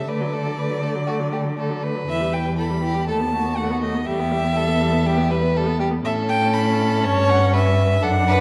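All four strings of a quartet begin together at once in this spirited, graceful classical-period movement in D major, taken from a longer piece and moving at a quick 121 BPM in 4/4 with a flexible, rubato feel. The first violin carries the melody high in its register, its rich, focused tone shaded with vibrato, while the second violin holds a smooth, even second line sitting close beneath it. The viola fills in the accompaniment with a warm, expressive sound, sliding between notes with portamento and vibrato. Up front and close, the cello anchors the bass with a dark, expressive voice that also uses portamento, and it stands as the most prominent part. The harmony moves from D through E minor and B7 over D sharp, returning to E minor before settling on A at 6.0 seconds and an A13 over G at 7.0 seconds. A reverberant concert hall surrounds the ensemble, giving the whole short passage a mellow, dusky production.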